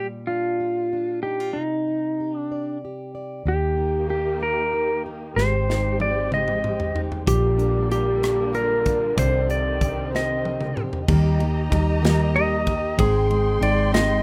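A twangy, up-front lap steel guitar carries the melody with slide and volume swells over a full-bodied, fingerpicked plugged-in acoustic guitar in this tender, romantic 6/8 pop ballad fragment. At 3.5 seconds a distant, bowed string section enters with soft-attack sustained chords, vibrato and portamento, alongside a round, foam-muted vintage electric bass, and at 5.4 seconds a polished studio drum kit with bright cymbals and a punchy kick joins with fills. From 11.1 seconds a dark second fingerpicked acoustic guitar adds background arpeggios, all under light reverb in a rough home-demo mix.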